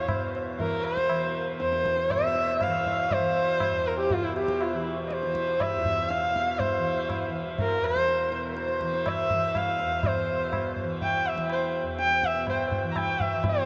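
Hindustani classical music in raga Todi on E, this short cut from a longer performance carries a solemn, longing mood in a seven-beat cycle at 121 BPM, gradually speeding up across its 13.7 seconds. A single bowed sarangi leads the melody from start to finish, sitting up front with a soft attack, light vibrato and expressive gliding portamento, its smooth top ringing with sympathetic strings and trailed by tape echo. Beneath it a mellow tanpura sustains a softly plucked, buzzing drone that shimmers in the low register. Low-tuned tabla enter at 0.1 seconds, their short ring close and dry against the rest of the sound. The whole performance is bathed in a huge, wet ambient reverb that places it in a vast, echoing space.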